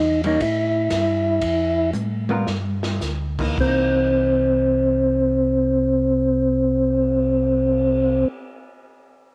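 A percussive tonewheel organ sits up front with a round melody, its third-harmonic percussion and slow rotary speaker colored by cassette tape, while a second, mellow organ lays down a dark, clean bass line with audible key click through its own slow rotary. This greasy, soulful soul jazz organ trio swings in 4/4 somewhere between 104 and 122 BPM, slowing over the first 3.6 seconds. A compressed, picked hollow-body electric guitar comps in the background, and an airy acoustic drum kit with dark cymbals and a boomy kick plays a fill from 1.9 to 3.0 seconds, all in a small-room home cassette sound with light reverb.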